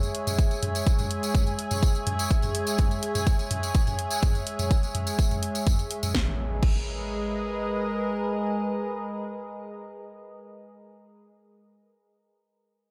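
A dark, driving melodic techno excerpt at 125 BPM in G# minor opens with a mellow, detuned wavetable pad holding evolving chords under chorus and sidechain pumping, joined by a cracking house kit of snare, hi-hat, toms and crash, a jingly tambourine and, from 0.4 seconds, a punchy, tape-warmed kick up front, both drum parts re-recorded in a large room, before an electronic impact arrives at 6.1 seconds as the harmony moves from C#m/G# to G#madd9, and the pad and impact carry on in light reverb once the drums stop at 6.8 seconds.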